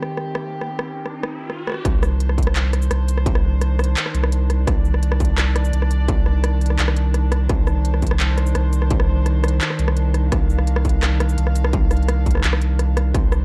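A dark, dry production gives this heavy yet spacious slice of half-time drum and bass a close, weighty feel, cut from a longer piece. A distant chamber string ensemble holds bowed, sustained chords throughout, its reedy gut-string tone and light vibrato carrying a period flavour while sidechain pumping makes it breathe against the beat. An overdriven industrial kit of handclaps, crisp hi-hats, rim clicks and shaker runs from the start, and a short electronic riser builds over the opening moments. At 1.9 seconds the drop arrives: a distorted, overdriven electronic kick and a deep, thick sub bass enter together. The saturated bass, with its triangle-like tone and fast attack, sits up front as the loudest element, while the harmony shifts from a plain minor chord to an added-ninth colour that lingers to the end.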